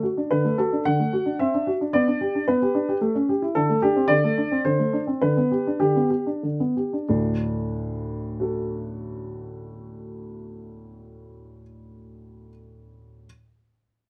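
A baby grand piano plays alone, up front, with an open tone and long sustain, in this elegant, cheerful classical-period sonatina in D major, cut from a longer piece. In 3/4 at 90-112 BPM with a straight feel, it moves through harmonies from D to G and A7, easing its pace from 2.8 to 7.1 seconds before a new section begins on D. Close, detailed microphones and light reverb capture the piano, tuned to A4 = 444 Hz.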